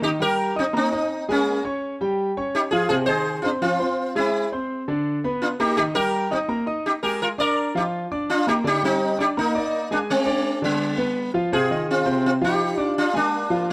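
A straight 4/4 Latin groove at 167 BPM drives this danceable, passionate passage in C minor, cut from a longer piece. Up front, a plucked sitar carries the melody with a buzzing, shimmering tone from its sympathetic strings, while a brilliant, vintage-sounding concert grand piano accompanies with smooth chords and a deep bass, moving through rich extended harmonies such as Cm7, Eaug7 and Abmaj7#11. Close, detailed microphones and light reverb keep both instruments vivid, and at 11.5 s the music moves into a new section built on Fm7 and Bb7.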